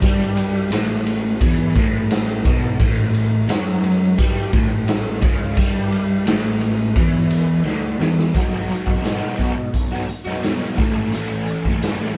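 Psychedelic rock at 86 BPM in a straight 4/4, this trippy, kaleidoscopic excerpt has a crunchy, double-tracked overdriven guitar riff run through a rotary speaker, sitting up front over a round, fuzzy picked electric bass and a raw garage drum kit with a punchy kick, a medium-tuned snare, hi-hat and ride cymbal in a bright stone room. The band plays live together in one room under light reverb, moving from an A5 chord to B at 8.4 seconds after a drum fill, then back to A near the end.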